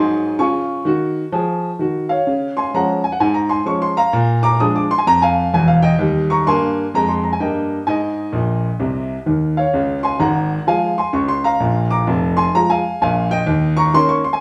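Exuberant and playful, this short stride piano cut from a longer jazz piece swings along at 128 BPM in Db major, with a solo grand piano carrying the whole 14.4 seconds on its own. The piano is clear and up front with a boxy, short-sustained tone, moving through Db, Bb7, Eb and Ab and adding a fill between 8.3 and 9.7 seconds. A wet studio reverb gives the sense of a live room around the instrument.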